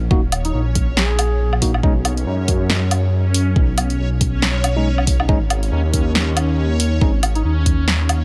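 A half-time groove with a loose, swung sixteenth-note feel carries this meditative, cavernous stretch of deep dubstep, cut from a longer piece. An electronic kick drum with a deep, layered low end sits beside a punchy deep house kit of hi-hat, snare and woodblock, both with the boxy character of a small room, the kit placed up front. Beneath them a dark, rumbling detuned sawtooth bass holds long, beating notes in the low register and fills the foreground. A reversed, granular texture swells dreamily in the upper register throughout, bright and detuned, with its own reverb and a long release. A tine electric piano drops clean stabs with dub echo from the background, first at 0.1 seconds and again at 4.8 seconds, while a distant, roomy duduk offers a brief folk-style phrase with vibrato, also trailed by dub echo. The overall sound is dry and close, the space coming from the echoes and the swelling texture rather than the room.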